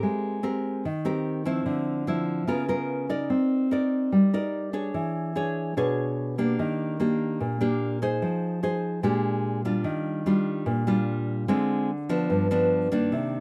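Set in a light reverb, this breezy, sophisticated bossa nova cut from a longer piece features a bright, up-front solo nylon-string guitar, fingerpicked in a classical manner and ranging from G2 to D5, moving at 147 BPM in Eb major through lush chords like Abmaj9, Db13 and Cm9 before a new section begins at 9.9 seconds and turns through Ebmaj9, Dm7b5 and G7.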